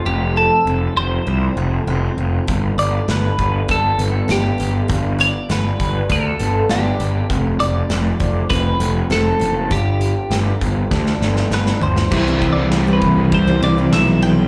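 Bittersweet and anthemic, this short cut from a longer quiet-loud alternative rock piece in G mixolydian moves at 100 BPM in a straight 4/4, with a clean, compressed twelve-string electric guitar carrying the phased, slapback-echoed melody over background arpeggios from a jumbo steel-string acoustic, an up-front growling fuzz bass, and a loose indie drum kit with dark cymbals and a tight kick that enters at 2.5 seconds, before a drum fill at 10.9 seconds ushers in an overdriven semi-hollow guitar riff with harmonic tremolo at 12.1 seconds, all heard as a live gig through the venue's PA with club reverb.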